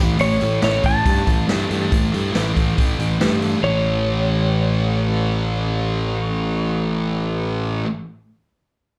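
Garage rock at 139 BPM in A mixolydian, raw and rowdy, caught live through a club PA, with a thick, double-tracked fuzz guitar riff and a round, overdriven fingered bass up front, a dark, clean lap steel melody with slapback echo played with fingerpicks and slide, and a punchy vintage drum kit of hi-hat, kick and snare that stops at 3.5 s, as the harmony moves from A5 to A at 3.6 s in this short cut.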